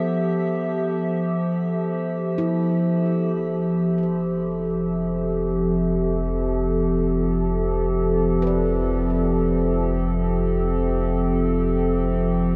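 In free, unmetered time, this weightless, dark-toned ambient fragment rests on a warbly, detuned tape-like pad holding mellow chords up front, joined briefly by a faint, glassy harmonics texture of drifting overtones, while a ringing handpan arpeggiates softly in the background with tape echo from 2.4 seconds, a deep, round sub bass enters at 3.3 seconds, and an evolving analog drone enters at 5.9 seconds and gradually fades, all bathed in a huge, wet reverb.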